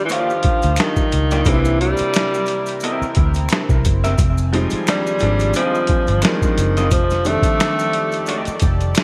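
Sultry and introspective, this 88 BPM neo-soul R&B excerpt sets a breathy, subtone tenor saxophone melody up front over a gritty, pitched-down boom bap drum kit with gated reverb and a round, foam-muted electric bass, while a slightly broken-up electric guitar with spring reverb and delay adds a second line, a clear concert grand piano and a shimmering chorused pulse-width pad sit in the background, and maracas and finger snaps add light percussion, all moving through Ebmaj9, C7, Fm7 and F13 in a bright 1980s-style production.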